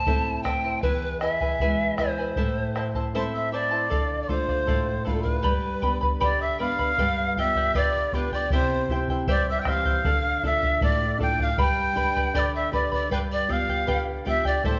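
A breathy pan flute with a wooden tone, vibrato and soft attack carries the melody up front in this melancholic, earthy Andean folk piece at 78 BPM in a straight 2/4, over a shimmering, fingerpicked charango with double strings, a small-sounding fingerpicked nylon-string guitar and a round, vintage bombo. At 3.2 seconds a cane quena joins with a breathy, end-blown second line pitched higher, its highs lifted, as the harmony moves from Am and E into a passage built on Dm, G, G7 and C. The ensemble plays live together in a large studio with a wet 1.5-second reverb and a softened top end, and the recording is cut from a longer piece.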